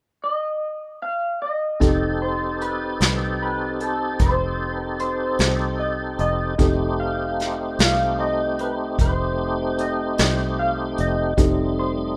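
A gritty, rollicking slow blues in a straight 12/8, cut from a longer piece, opens with a bright, twangy electric guitar through a small old amp, slightly broken-up and picked with analog chorus, carrying the melody alone until the band enters on an F7 at 1.8 seconds. A woody upright piano with short sustain comps beneath it, while an up-front tonewheel organ holds full, lightly overdriven chords through a slow rotary speaker and chorus vibrato, a dark, round, foam-muted fingered bass anchors the low end, and a vintage brush kit with punchy kick and rolled-off top sits prominently forward. The whole has the rough, intimate feel of a home demo, with light reverb and small room ambience.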